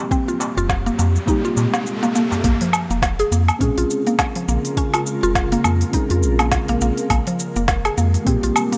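Earthy and hypnotic, this organic downtempo excerpt moves with a swung 4/4 feel, opening on a rootless Abmaj7 that settles onto Bbm7 at 2.4 seconds before returning to Abmaj7. Muted, felt-like synth keys give dark, intimate chords with chorus, sidechain pumping and digital delay, while a woody, mallet-like synth pluck runs arpeggios treated with chorus, phaser and delay. An electronic riser sweeps through the opening seconds, and the soft, overdriven electronic kick briefly drops out just before the shift. Up front, an organic electronic drum kit with a woody snare, smooth hats, shaker and woodblock carries overdriven grit, joined early on by a crisp, deep darbuka played with soft hands. A round, sine-like sub bass anchors the low end, and from 3.3 seconds an ethereal, airy pad fills in sustained chords with ensemble chorus, phaser, built-in reverb and pumping, all set in a light digital ambience.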